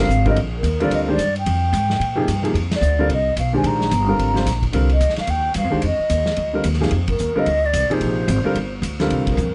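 Searching and spiritual, this brief modal jazz piece in F dorian swings at a brisk 220 BPM in 4/4, built on a single F13sus4 harmony heard from the start. A mellow, hollow concert flute carries the melody with a pure tone, soft attack and gentle vibrato, its highs lifted above the dark production. A baby grand piano sits up front in a natural, warm voice as accompaniment. Beneath, a woody, growly upright bass plays pizzicato with steel-string bite, placed close and present. A vintage acoustic drum kit of hi-hat, kick, ride and snare sits lower in the balance, with dark cymbals, a punchy kick, a medium-tuned snare and a pumping small-room sound. Light reverb surrounds the group, and the band hits accents together at 2.7, 7.1 and 9.2 seconds in this fragment cut from a longer performance.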